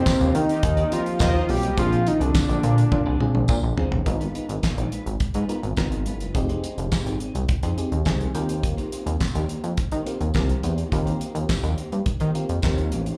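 Heard as a live gig through a club PA with moderate room reverb, this danceable, feel-good early-eighties boogie funk cut opens with a fat sawtooth analog lead carrying the melody up front until 3.8 s, briefly joined in the background by bold, detuned synth brass, while a drum fill from 2.9 s leads into the next section. A glossy, nasal chorused synth bass and a dry acoustic 70s drum kit, with handclaps and a tight kick, drive the groove beneath a warbling, phased FM electric piano that adds a fill at 7.8 s. A dark, slightly broken-up guitar riff and a jingly tambourine sit in the background throughout.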